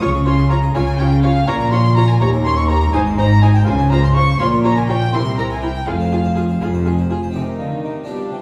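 In a straight 6/8 at 82 BPM in F minor, this driving, stormy baroque-style concerto excerpt pairs a pure, wooden baroque flute melody with a gut-string violin section, while a second violin section plays a second line in the background. Dark nasal violas, a full French harpsichord and a prominent rich cello section join them, along with double basses that drop out at 7.3 seconds. All are heard from further back in a wet recital hall as the harmony moves from Db through Eb7, Dbmaj7 and C7 to land on Fm and then Cm.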